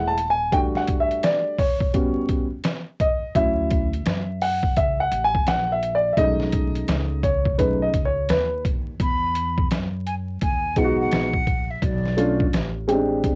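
A home cassette recording with vinyl crackle and light reverb frames this smooth, relaxed jazz-hop excerpt in E major at 85 BPM, cut from a longer piece, with a swung 16th-note feel. A dark, mellow concert grand piano with short sustain sits up front, treated with cassette tape and plate reverb and taking a solo through 9.0 seconds over rich extended chords, while a woody pizzicato upright bass with tube saturation and a gritty, pitched-down sampler-style kit with a thumpy kick and overdrive carry the groove. At 9.0 seconds a breathy, hollow jazz flute with a straight tone and soft attack enters with a short melody, ending at 12.5 seconds.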